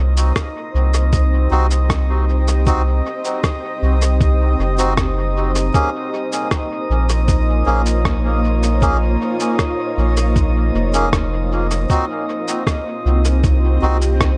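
Meditative and hazy, this ambient dub fragment rests a round, up-front sub bass beneath a cloudy, detuned granular pad and a glassy texture of drifting overtones, while a muffled, pitched-down kick and cabasa with rim click keep a straight 4/4 pulse and a reedy, breathy melodica enters at 1.5 seconds with stabs trailing dub echo, all moving from Cdim to Bbm and back in an echo-heavy mix.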